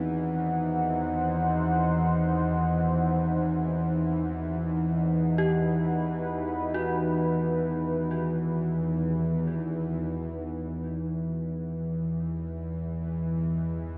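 Drifting in free time, this cavernous dark ambient drone, cut from a longer piece, holds a tense, string-like bowed drone and a deep, moody sawtooth pad up front for the full 14.0 seconds, while an eerie, inharmonic FM synth bell plays arpeggios with chorus, tremolo and tape echo in the background until 12.2 seconds, the whole bathed in a cathedral reverb as the harmony moves from Cm to Em at 10.4 seconds.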